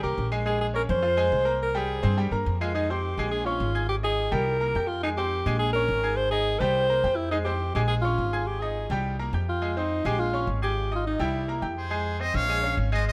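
A clear, punchy alto saxophone with vibrato leads this fiery, passionate Latin excerpt in F minor at 210 BPM, over brilliant grand piano accompaniment and a woody, thumpy pizzicato upright bass, before a tight, bright trumpet section takes the melody at 11.8 seconds, all set in a moderate plate reverb.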